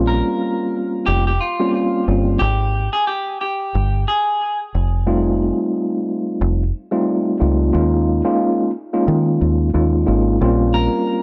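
A mellow tine electric piano and a deep dub fingered bass open this reflective, moody boom-bap hip-hop excerpt at 90 BPM in 4/4, with a 16th-note swing in Bb dorian. The piano sits up front with a soft, tape-worn tone, filtered at both ends and sounding as if played through built-in speakers. The bass is dark, round and punchy, foam-muted and direct, holding the low end up front alongside it. A clean, picked electric guitar carries the melody from 0.1 to 4.6 seconds, sitting a little lower in the mix, filtered and trailed by tape echo, then slips back in at 10.7 seconds. The harmony moves from Bbm69 through a break with the chord dropping out, then F9 and Eb9sus4 before returning to Bbm69. Light digital reverb surrounds an otherwise dry, gritty hardware sound.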